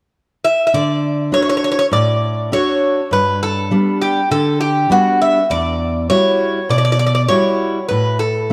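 A metallic Greek bouzouki leads this relaxed Greek folk excerpt, its picked double strings, some doubled at the octave, carrying the melody from 0.4 seconds. A full-bodied fingerpicked steel-string acoustic guitar joins at 0.7 seconds, moving through D, G and Emadd9 in D major at a straight, easygoing 100 BPM in 4/4. Both instruments sit up front within a long, lush plate reverb, giving the short passage a warm, spacious glow.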